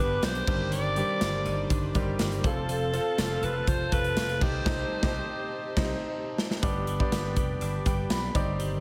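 1980s-style pop at 122 BPM in C harmonic minor, urgent and moody, as a raspy, gritty alto saxophone with vibrato and tape echo carries the melody until 6.1 seconds over a brilliant grand piano with audible action noise, a swirling phased analog pad, a twangy twelve-string electric guitar riff in the background, punchy vintage slap bass and a big rock drum kit with gated reverb, with a band accent and drum fill leading into the move to G at 6.6 seconds in this cut from a longer piece.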